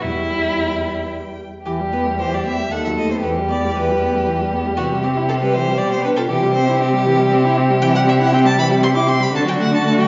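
This spirited, graceful string quartet movement in the classical-period style opens with all four players at once, in E minor at a quick 117 BPM in 3/4 with a rubato feel. The first violin carries the melody with a rich, focused, close tone and vibrato. The second violin plays a supporting line in a narrow middle range, expressive and up front, with vibrato and portamento. Beneath them, the dark viola gives soft-attacked, smooth-topped accompaniment, while the warm cello anchors the bass, both bowed with vibrato and expressive portamento. A brief opening phrase gives way at 1.7 seconds to a longer passage where the harmony moves from E minor through C and settles on D at 9.3 seconds, as this cut from a longer piece ends. The players sit in the wet reverb of a recital hall, in the setting of a church or concert hall, and the high end of the sound is rolled off above 7.7 kHz.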